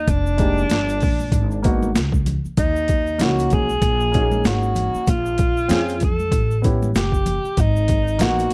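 Jazz-hop in the hip hop mold, this short cut from a longer piece carries a cool, smoky mood over a swung sixteenth-note feel. A breathy alto saxophone takes the melody as a jazz-style solo, mellow and up front yet distant and roomy, colored by vibrato and scooped notes. Underneath, a pizzicato upright bass sounds woody and growly, while a boom bap sampler-style drum kit, pitched down, compressed and overdriven, sets a thumpy kick and high-tuned snare against hi-hat, its gritty tone re-recorded in a large room. Bright tube shaker and congas played with hard hands sit in the background, and a worn baby grand piano enters at 0.4 seconds with long sustain, accompanying through chords such as Fm11, A9 and G#m9. The production is dark and warm, with little reverb.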